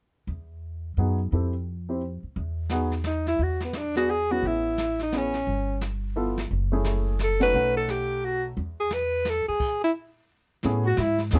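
Small-group swing and bop jazz in a brisk 3/4 at 174 BPM, carrying a warm, sophisticated mood in E major, heard as a short portion cut from a longer piece. Pizzicato upright bass on gut strings opens at 0.3 seconds, woody and thumpy and placed up front, with a dark, mellow baby grand piano joining shortly after to comp through chords that move from Emaj7 and Fmaj9 toward Amaj7, G13, F#m7 and B7. A brushed drum kit enters at 2.4 seconds, airy and polished with dark cymbals, a medium-tuned snare and a boomy kick in a small-room sound. The breathy alto saxophone carries the melody from 3.1 seconds, clear and soft in attack with light vibrato, sitting prominently over the band in a jazz solo style. After a stop in the music, a trumpet with vibrato adds a brief second line near the close over an Amaj9 chord, all under a light reverb.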